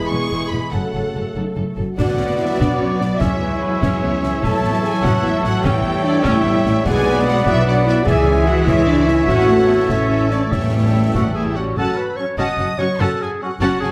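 A wet recital-hall reverb surrounds this swashbuckling, determined slice of heroic adventure film score, moving at 98 BPM in a straight 6/8. Lush violins carry a vibrato-rich, smooth-topped melody over soft-attack violas, a focused cello section and woody double basses, while a second violin line joins, and dark French horns and bright, tight trombones hold sustained chords from the opening. At 2.0 seconds a clear clarinet, a mellow, hollow flute and a distant, roomy oboe add second lines, while clear trumpet stabs and concert snare, bass drum and bright clash cymbals drive the passage until the percussion stops at 11.3 seconds.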